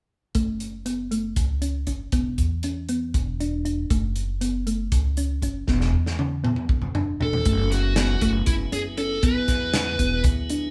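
Progressive instrumental in a tense, intricate 7/8 at 237 BPM in F# minor, where a round, tine-like synth pluck with chorus spins arpeggios over a punchy, up-front studio drum kit and woody pizzicato upright bass, a drum fill at 5.7 seconds leads into a second section where an overdriven lead guitar takes the melody from 7.2 seconds and a piping tonewheel organ on slow rotary speaker adds quiet accompaniment, all sounding like a band playing live in one room with light reverb.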